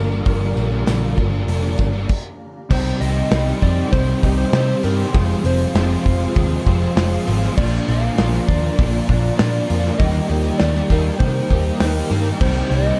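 A dreamy, hazy shoegaze and dream pop rock excerpt at 99 BPM in C minor, where a soft, warbling FM synth lead carries the melody through chorus and analog delay over a glassy, ethereal pad, a shimmering octave-doubled twelve-string acoustic picking arpeggios very quietly, a dark clean electric guitar riff bathed in reverse reverb, and an overdriven hollow-body guitar riff with ensemble chorus. A round, foam-muted vintage bass and a punchy, up-front indie drum kit in a pumping small room anchor the groove, while a jingly tambourine sounds only from 0.1 to 2.0 s. After a brief stop at 2.1 s, the band moves from Gm7 into a Cm–Fm–Bb–Eb progression, all within a dark production.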